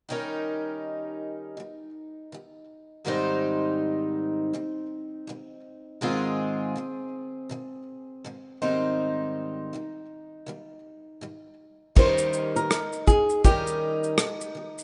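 A shimmering, octave-doubled twelve-string acoustic guitar picks out a sunny, easy-going swung acoustic pop groove over Eb7 and Abmaj7 chords, joined at 12.0 seconds by a fingerpicked flamenco guitar melody with audible finger squeak and a small-room country drum kit of punchy kick, rim click, shaker and dark crash cymbal, all in a rough, lightly reverberant home-demo mix cut from a longer piece.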